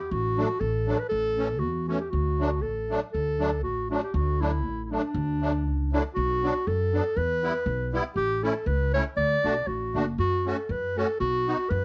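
Alpine folk dance-band music, bouncy and festive in a lightly swung 2/4, with a warm, classical-style solo clarinet carrying the melody up front over a reedy, shimmering musette accordion and a woody pizzicato upright bass, moving into a minor-key second section at 6.2 seconds, all heard through light reverb and the warbling pitch drift of worn cassette tape in this short cut from a longer piece.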